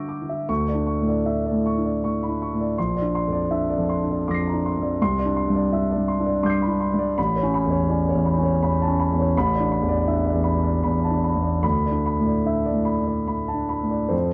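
A warm concert grand piano plays alone, up front with deep bass, in a luminous, serene impressionist classical piece in 3/4 that moves with rubato at 70-84 BPM. Open, colored harmonies drift from D5 through Bbadd9, Cadd9, Aadd9 and Asus24 before settling back on D5 at 11.6 seconds. Light reverb surrounds the playing, and a worn, cassette-like tape quality adds a warbly pitch drift to this short cut from a longer piece.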